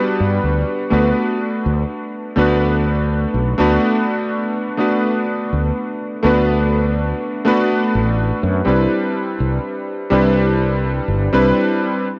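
A clear, vintage electric grand piano opens this woozy, nostalgic vaporwave fragment at a slow 62 BPM in straight 4/4, its clangy low end sitting up front under analog chorus and delay as it moves from Gmaj7 to a long D6 in D mixolydian before settling on Cmaj9 at 8.7 seconds. A growly, amped fretless electric bass joins at 0.2 seconds and stays close and direct beneath it. A lush hall reverb and a cassette tape haze give the fragment its faded, dreamlike cast.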